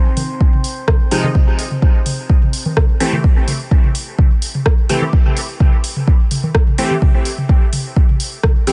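A deep, overdriven electronic kick sits up front in this hypnotic, nocturnal dub techno excerpt, driving a straight 4/4 pulse from 0.4 seconds. Around it, a layered deep house kit of hi-hat and rim click and a set of analog electronic toms and congas share a gritty overdrive and the character of being re-recorded in a small room, with the toms and congas pumping against the kick. A calm, glassy sine texture of drifting overtones opens the track, slow to bloom and long to release, dressed in chorus and its own reverb, and it stops at 1.4 seconds. From 1.1 seconds a juicy, detuned sawtooth polysynth plays bright, resonant stabs with a filter sweep, coloured by chorus, phaser, pumping and dub echo, settling on an Am7 chord at 1.4 seconds. The mix is dry overall, with a subdued top end.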